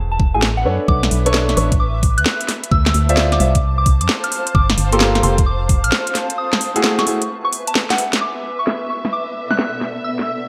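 This UK garage excerpt rides a moody, bouncy two-step groove at 131 BPM, its sixteenths swung and its harmony moving through minor ninth chords. An up-front, organ-like FM bass with a hollow, percussive attack carries the low end until 5.9 seconds, beneath a knocking, tape-warm electronic kick and a layered garage kit of cracking, low-passed snare and metallic, filtered hats set in a small room with gated reverb. A soft, pure synth bell sings the melody through chorus, phaser and delay, while a dark, mellow grand piano adds echoing stabs and a cloudy granular pad drifts behind everything with sidechain pumping. After a drum fill at 7.9 seconds, a muted, con sordino violin section enters at 8.2 seconds with lush, veiled sustained chords, also pumping and filtered. The production is bright in a 1980s digital way, with light reverb.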